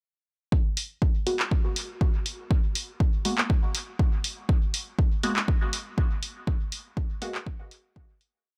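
Hypnotic and deep, this short dub techno groove rides an overdriven, up-front four-on-the-floor kick and a punchy analog drum machine's dry handclaps and hi-hats touched with dub echo, while sparse, muted chord stabs of detuned sawtooth and square waves sit on a single G#m9 shape moved in parallel, passing through a filter sweep, phaser, sidechain pumping and echo before the whole track fades out from 5.8 seconds.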